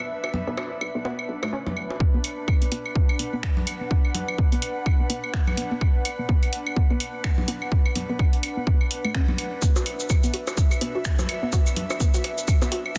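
A punchy, tape-warm electronic kick sits up front in this cool, quirky minimal techno excerpt in B minor at 126 BPM with a swung 16th feel. It arrives at 2.0 seconds just as the hollow, bouncy FM bass drops out, and the build-up begins. Joining from 2.2 seconds, an analog drum machine plays finger snaps, hi-hat and shaker, its hats and snare filtered and the snare softly clipped. Throughout, claves, bongos and congas trail tape echo in a large room and an airy, breathy pad pumps under chorus, while from 0.3 seconds a squelchy, resonant blip pluck riff rides filter sweeps, lush chorus and dub echo in a dense, heavily limited mix.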